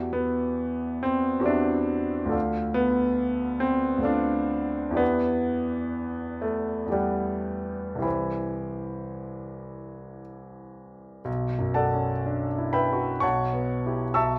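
Classical impressionist solo piano, hazy and nocturnal in mood, this passage is cut from a longer piece and unfolds in a slow, rubato 3/4 at roughly 52-70 BPM, tuned to A4 = 441 Hz. A concert grand carries everything alone from start to finish, its clear, polished tone placed up front with an intimate presence and the mechanical noise of the action audible beneath the notes. Its register spans from deep bass around B1 up to E6, and the long sustain lets each chord linger. The harmony drifts through Em9, Dm6 and Cmaj7 before a new passage arrives at 11.3 seconds on Bm11, settling toward Em6/B. A moderate large-studio reverb adds a gentle halo of space around the instrument, deepening the dreamy, late-night atmosphere.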